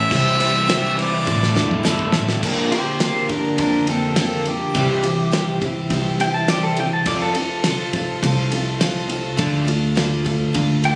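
A clean pedal steel guitar, played with fingerpicks and carrying volume swells and slapback echo, takes an up-front solo from 2.4 seconds in this dusty, reflective folk rock and heartland rock cut, after a brief bright harmonica phrase with scooped notes and a drum fill at 1.3 seconds on the damped 70s kit lead in, while a shimmering, octave-doubled twelve-string acoustic guitar, a crunchy double-tracked overdriven guitar riff, a woody, growly upright bass, the fat-snared kit and a very quiet jingly tambourine fill out a small, club-like room captured on a phone.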